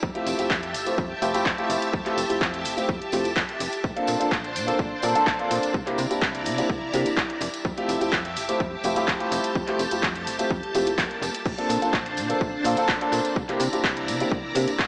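An up-front concert grand piano with deep bass and a short sustain plays accompaniment through a phaser and sidechain pumping in this sunny, feel-good filtered disco house excerpt at 126 BPM in F major, moving through Fmaj9, Bbmaj9 and C9. Lush, bright string-machine chords with a slow attack and ensemble chorus sustain above a snappy, digital FM slap-like bass with a metallic attack, while a punchy, overdriven electronic kick and a layered house kit of crash cymbal, handclaps and hi-hat, both re-recorded in a large room, drive the groove with an acoustic tambourine in the background. A very quiet downlifter sounds at the start and a swell arrives from 10.7 to 11.5 s, all within a dreamy mix soaked in church reverb with a small-speaker sound.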